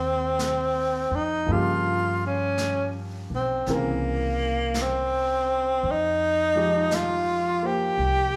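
Jazz ballad, wistful and smoky, in which a breathy, whispered tenor saxophone with vibrato carries the melody up front over warm grand piano chords with short sustain, a woody, growly pizzicato upright bass and a brushed drum kit that joins at 0.4 s, the band playing live in one room with moderate large-studio reverb and a swung eighth-note feel through Abmaj9, Gm7b5, C7b9 and Fm9.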